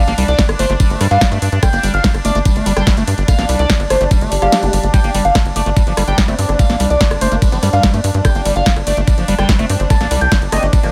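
Lightly reverberant digital ambience frames this hypnotic psychedelic trance fragment in G minor at 145 BPM, where a knocking, up-front electronic kick and a tight, punchy sawtooth sequencer bass drive a tape-warm techno kit of punchy snare, warm hats, ride and rim click. Above them a gritty, screaming, guitar-like overdriven synth lead carries the melody through phaser and dub echo, while a bright, bubbling stepped-filter texture sustains chorused chords and a squelchy liquid acid bass riff sits in the background, all three pumping with the sidechain. A background electronic swell enters at 4.3 s as the kick drops out at 4.5 s, and a juicy, detuned resonant blip pluck enters at 6.3 s as a quiet second line with phaser and digital delay.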